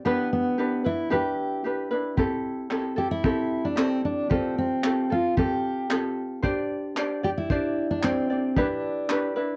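Acoustic pop at 113 BPM in a straight 4/4, wistful and tender, this excerpt from a longer piece opens with a light, fingerpicked ukulele accompaniment and a dark, full-bodied fingerpicked steel-string guitar carrying the melody up front over chords moving from G6 through Am7, Fadd9 and Csus2. At 2.2 seconds a cloth-damped, thuddy drum kit of handclaps and a tight kick enters, muffled and gritty with a rolled-off top, sitting lower in the mix. Light reverb and the worn, warbling pitch drift of old cassette tape give the whole recording a hazy, nostalgic character.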